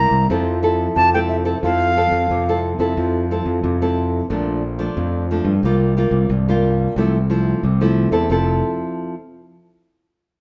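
A straight 4/4 pulse at 90 BPM carries this sunny, lively fragment of a longer samba and choro piece in F major. A reedy concert flute opens with the tongued melody in a straight, airy tone, and its brief phrase ends at 2.6 seconds. Beneath it, a classical nylon-string guitar is fingerpicked with audible finger squeaks, and it moves through Fmaj7, Bbmaj7 and C7sus4 before settling back on Fmaj7. A growling fingered electric bass, bright, overdriven and amped, anchors the low end until 8.6 seconds, leaving the guitar to sound on alone until 9.1 seconds. The three players sit up front in a single stone room, its 1.2-second reverb lending a wet, live glow.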